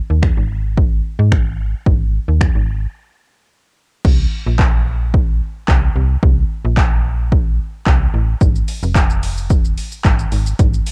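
This dance-pop excerpt moves at 110 BPM in straight 4/4 with a bittersweet yet driving mood. A slap-like FM bass opens at 0.1 s, sitting up front with a snappy, digital attack that decays into a mellow tail, spanning F1 to Ab2 and pumping under sidechain compression. A deep house drum kit joins almost at once, equally forward, layered and electronic with a punchy kick, metallic hats, crash cymbal, finger snaps, handclaps and shaker, all pushed through overdrive and cassette-tape coloring. A break from 3.0 to 4.0 s leads into a new section that carries through to the end. The mix is dry, with the character of a home cassette recording.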